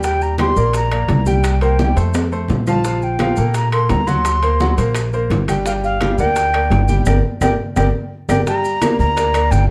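A driving, straight 4/4 salsa groove at 171 BPM in G minor is carried by an up-front pizzicato upright bass with a woody tone, thick-skinned congas sitting in the background, very quiet round bongos played with hard hands, ringing metal-shell timbales and vintage, band-limited claves that both enter at 0.4 s, and grainy maracas. Over this, a bright, present upright piano plays short-sustained accompaniment while an airy, mellow jazz flute carries a passionate, expressive melody with vibrato and tongued notes. Drum fills and a band accent push into a brief new section at 8.5 s, in a dark production with moderate studio reverb, cut from a longer piece.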